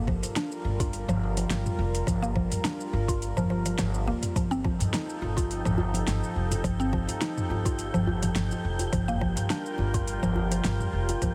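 A woody, thumpy upright bass sits up front in this hypnotic, mystical stretch of organic downtempo, its pizzicato steel strings pumping gently with sidechain compression. Around it, a round, mellow mallet-like synth pluck spins arpeggios through chorus, phaser, cassette tape and delay, while a warbling, nostalgic tape-like pad holds detuned sustained chords that breathe with sidechain pumping. A soft electronic kick recorded in a small room anchors the swung 4/4 groove, joined by a deep house kit of fat snare, metallic hats, shaker and toms. A close, dry djembe played with soft hands slips into the background at 4.5 seconds, and an airy, breathy wind-like texture drifts in at 4.8 seconds. The harmony moves from Gm7 to F7 and back, and the whole passage carries light reverb and a heavily compressed, radio-like sound.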